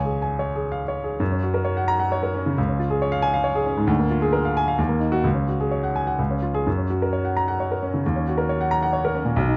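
Rubato 3/4 at 122-140 BPM carries this sparkling, brilliant fragment of a virtuoso classical piano study in F# major, tuned to A4 = 442 Hz and played solo by a baby grand with a natural, up-front tone and short sustain across B1 to A#5, its harmony moving from C# to F# at 1.2 s, then through A#7/D, D#m and C#sus4 to a closing D#m7 at 8.0 s, set in light reverb and a dark, warm production.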